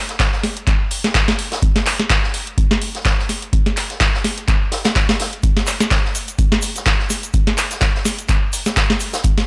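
This house excerpt has a raw, hypnotic pull, built entirely from layered drums with a noticeable swing. A deep electronic kick sits up front with its analog character, re-recorded in a large room. Beside it, a booming analog drum machine supplies handclaps, a crisp snare and metallic hi-hats, each carrying a short room of its own. Further back, a soul drum kit adds its own hi-hat and a medium-tuned snare, sounding distant and roomy from a tight booth, with high-pass filtering thinning its hats, snare and room. At 5.4 seconds a grainy, bright egg shaker joins in the background, close and dry. Overall the mix carries little reverb, keeping the groove direct and dry.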